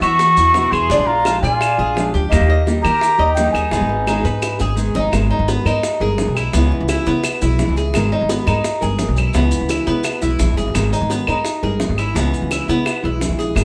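A straight 4/4 son groove at 171 BPM rides on thumpy, up-front pizzicato upright bass, distant woody claves, grainy compressed maracas and tight, high-tuned bongos entering at 0.2 seconds, giving this danceable, nostalgic Cuban guajira in G# minor its lift. An airy, slightly unsteady silver concert flute with a crisp chiff carries the melody while a clear trumpet with light vibrato plays a second line beneath it, both stopping at 4.7 seconds in the middle of a drum fill. From there the fingerpicked nylon-string guitar, its finger squeak audible, and the metallic double-strung arpeggios of the Cuban tres carry on in a moderate room reverb, cycling between G#madd9 and C#m7.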